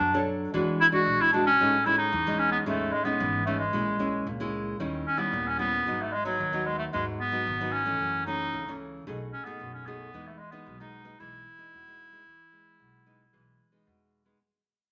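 Bathed in a wet, large-studio reverb, this playful, sunny samba and choro excerpt at 112 BPM in E major sets a bright, vintage-toned clarinet melody up front over full-bodied, fingerpicked nylon-string guitar, with a woody, growly pizzicato upright bass in the background, moving through chords such as Amaj7#11, D#7b9 and G#m7 as the passage fades out across its 14.4 seconds.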